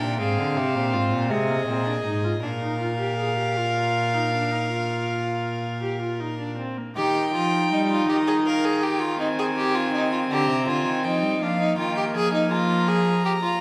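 From the first moment, a string quartet plays a joyful, lively baroque-style fugue in 12/8 at 54 BPM, with a warm violin carrying the melody with light vibrato above a rich, close second violin, a viola accompaniment of similar warmth and an up-front dark cello bass with a smooth top, each part bowed by one player in a reedy, gut-string period style, all set in a wet concert hall reverb, in a passage cut from a longer piece whose second section begins at 7.0 s.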